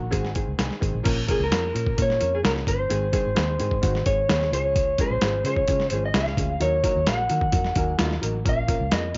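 Uptempo 1960s-style soul at 130 BPM in a straight 4/4, this joyful short excerpt is tuned to A4 = 435 Hz. An electric guitar through a small old amp carries the melody up front, its picked tone slightly broken-up, compressed and lo-fi. A worn, woody upright piano, slightly detuned, supplies the accompaniment and plays fills at the opening and again at 7.5 seconds. Beneath it, a foam-muted fingered electric bass sounds dark, round and punchy. The drum kit enters at 0.1 seconds with a gritty, sampler-style character: overdriven, up front, with a thumpy kick, a medium-tuned snare, hi-hat and crash cymbal, re-recorded in a small room. Light reverb and a rolled-off top end give the mix a warm, vintage sheen as the chords move through Ab, Bbm, Db and Ebm.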